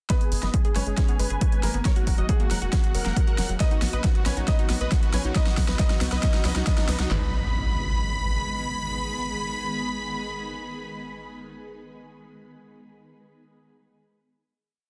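Euphoric and emotional, this short uplifting trance piece spends its first 7.1 seconds as a build, with a thick, detuned supersaw riff repeating over a pedal note in thirds and sixths under sidechain pumping and a filter sweep, while a round analog pluck loops a six-step sequence that drifts against the bar. A punchy, overdriven analog drum machine drives a four-on-the-floor kick with snare and claps up front, a layered big-room kit adds a huge snare and programmed hats, a tight, nasal sequencer bass gallops in sixteenths, and a clear, worn grand piano repeats a riff melody in octaves in the background. A shimmering, ethereal pad enters at 1.3 seconds, very quiet riser and impact effects mark the transition, and the piece settles onto a final chord at 7.1 seconds in a dense, heavily limited master.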